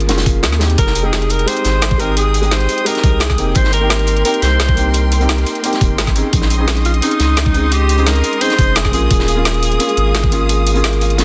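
This excerpt of uplifting, dreamy liquid drum and bass at 173 BPM in Ab major opens with a soft, felt-muted upright piano trailing dub echo, a deep, round sine sub bass sitting up front, and an overdriven drum kit with a woody snare and bright hats. A darker, gritty breakbeat kit with a rolled-off top joins in the background at 0.1 seconds, and a knocking, layered electronic kick arrives at 0.3 seconds, drops out briefly, and returns at 0.8 seconds. At that moment a forceful, jazz-style alto saxophone takes the lead with vibrato and a smooth top, its line carried by digital delay. A rich, bowed string section enters behind it at the same time, holding sustained chords that pump against the sidechain. The harmony moves from Eb9sus4 through Fm9, Abmaj9 and Bbm11 before circling back to Eb9sus4, all set in a small, lightly reverberant room with a dense, heavily limited modern master.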